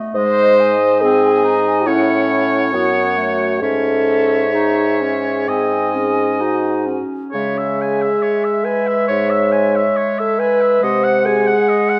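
Heard in a moderately reverberant concert hall, this elegiac 12-second excerpt from a slow romantic wind-quintet movement in C# minor moves at 64-71 BPM in 4/4 with a melancholic rubato: an airy, crisply attacked flute with vibrato carries the melody over the distant oboe's vibrato-tinged second line, while a roomy clarinet and a warm French horn with light vibrato, the loudest voice, fill out the accompaniment above the soft-attacked bassoon bass, and the harmony arrives on G#7/B# at 10.8 s.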